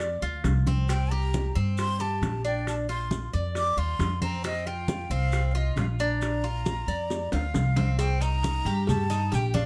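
Lightly reverberant and sunny, this relaxed Cuban son and guajira clip moves at 135 BPM in Bb major, with a thumpy, woody upright bass in gut strings sitting up front beneath a breathy, hollow metal flute melody that carries vibrato and a soft attack. A picked Cuban tres with double strings adds metallic arpeggios, while tight, high-tuned vintage bongos and cowbell join hard-handed low-tuned congas and grainy maracas, the congas and maracas sitting in the background. A drum fill from 7.1 to 8.0 seconds leads into a new section on a Cm7 chord.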